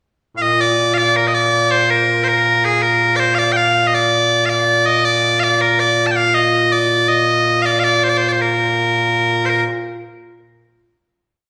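Ceremonial and proud, this short, complete piece of Scottish traditional pipe music moves at 108 BPM in a straight 6/8 lilt in Bb major. A lone set of bagpipes plays up front from 0.4 to 9.7 seconds, its bright, piercing, continuous tone carrying an ornamented modal melody that reaches from Bb2 to A5 after a brief pickup. A wet recital-hall reverb from a church or concert hall rings around the pipes through the final note, with some lossy compression artefacts.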